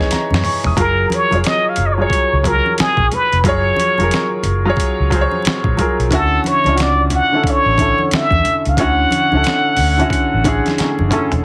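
Heavily compressed with a radio-like sound and a light touch of reverb, this short cut from a longer neo-soul and R&B piece moves at 90 BPM in 4/4 with a swung sixteenth-note feel and a soulful, warm mood. A dusty, sampler-style drum kit of hi-hat, kick, snare and toms sits up front, gritty and overdriven as if re-recorded in a small room, with a thumpy kick and fat snare, and it plays fills at the start and again near the close. A dark, round, foam-muted fingered electric bass and a clear, worn grand piano carry the harmony through Emaj9, F#maj9 and Dmaj9, while low-tuned, thin-skinned congas sit in the background. From 0.8 seconds a plunger-muted trumpet takes the lead, brilliant and forceful with wah-wah, vibrato and a slapback echo, in a punchy vintage jazz style. At 10.8 seconds, during a closing band accent, a bright trombone section adds a brief ensemble stab with vibrato.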